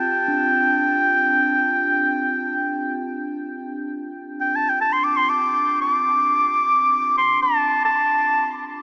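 Unmeasured and free in time, this short cut from a longer piece of meditative world music drifts with a spacious, contemplative calm. A solo oboe carries the melody high in its range from the very start until 8.6 seconds, sitting up front with a close, intimate presence, a warm classical tone and a light vibrato, its line trailed by tape echo. Beneath it, a quartz singing bowl struck with a suede striker rings as a quieter texture, pure and dark with a smooth, slowly beating shimmer that lasts until 8.1 seconds. A huge, wet ambient reverb with a long tail surrounds the scene, while the overall sound has the character of a small speaker.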